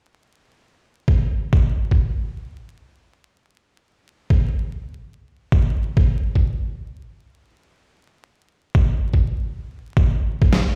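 Funky and playful, this glitch hop excerpt moves at 108 BPM in 4/4 with a 61% swing on the sixteenths, driven by a gritty, pitched-down electronic kick drum with a thumpy, compressed, sampler-style punch that sits up front from 1.1 to 10.5 seconds. At 10.5 seconds a medium-tuned electronic snare drum cuts in briefly, overdriven and just as up front. The whole thing sounds as if played on a big sound system in a bare room, with a large studio reverb and vinyl crackle around it.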